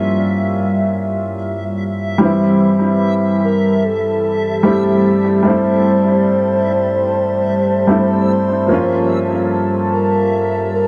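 A brooding, cinematic trip hop excerpt at 74 BPM in A phrygian opens with a woody upright piano, treated with tremolo and tape echo and set up front, against a deep, detuned sawtooth pad carrying chorus and gritty 12-bit sampler character, while a faint, reversed granular texture glints high above. The chords move from Bbm to Am7 at 2.2 s, and at 3.4 s a pure, breathy sine lead with vibrato and dub echo enters over the Am7 before the harmony returns to Bbm at 8.7 s. The echo-heavy mix sits in a moderate plate reverb with a rolled-off top end.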